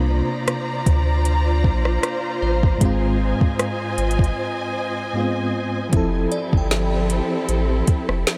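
This dreamy, smooth contemporary R&B excerpt at 77 BPM opens with a mellow FM electric piano laced with tremolo, lush bowed strings with vibrato and portamento, and a deep, round sine sub bass, moving from C9sus4 to Ab6 before settling on Fmaj7. An electronic drum kit with soft kick, woody snare, rim click and metallic hats enters at 0.5 seconds on a lightly swung 16th feel. A glassy, crystalline synth bell with chorus and tape echo drifts in the background from 2.4 seconds, a break arrives at 4.4 seconds, and the mix is steeped in huge ambient reverb.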